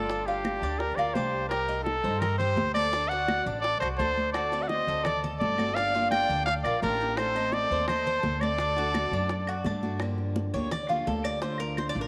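A bright, up-front trumpet carries the melody with vibrato and a smooth top, leading this short, nostalgic and sultry fragment of Cuban son and guajira at 170 BPM in 4/4. Beneath it, a dark, bowed studio violin section sits in the background on a second line. The picked tres spins metallic, double-strung arpeggios, and a thumpy pizzicato upright bass with gut strings holds the low end. Damped, high-tuned congas, round low-tuned bongos under soft hands and woody claves keep the percussion light. A picked steel-string acoustic guitar joins the accompaniment at 4.3 seconds, and once the trumpet and violins drop out, the tres takes a solo from 10.0 seconds, all set in a moderate plate reverb over minor-leaning chords.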